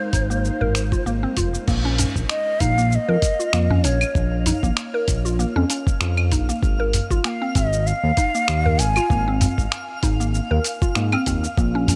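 Earthy and unhurried, this organic downtempo excerpt sets a breathy, close-miked ney melody with vibrato and tape echo over woody, warbling FM synth-pluck arpeggios washed in chorus and delay, while the ney falls silent at 9.4 seconds. A smooth, up-front synth bass and a thumpy, overdriven electronic kick anchor a gritty, swung sampler-style kit of claves, crash cymbal, finger snaps, hi-hat and shaker, with a small acoustic udu sitting in the background. An ethereal, airy pad with ensemble chorus sits far back, briefly at the start and again from 11.6 seconds, and a twinkling granular shimmer enters at 2.5 seconds, all in a lightly reverberant space.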